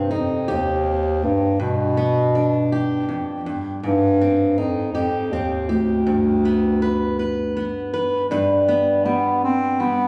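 In a straight three-four lilt, this haunting, reflective fragment of acoustic folk places a warm, classical-style bass clarinet solo up front over a full-bodied jumbo steel-string guitar, fingerpicked with audible finger squeak, as the harmony moves through Cm, G and Abmaj7 into a new section at 8.3 seconds, the duo heard through moderate stage reverb in a compressed phone recording that catches the club's room ambience.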